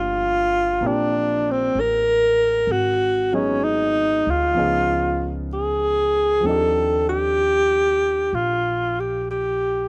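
A tender, late-night jazz ballad with a gentle swing, cut from a longer piece, in which a breathy alto saxophone carries the melody up front, its subtone colored by light vibrato and scooped notes. A warm baby grand piano accompanies beneath it, while a woody, thumpy upright bass with gut strings plays pizzicato underneath, all three sounding together throughout the roughly 9.9 seconds. The dry outdoor sound keeps the chords moving from Gm7 through Abm7 and Db9 to Ebmaj13 close and intimate.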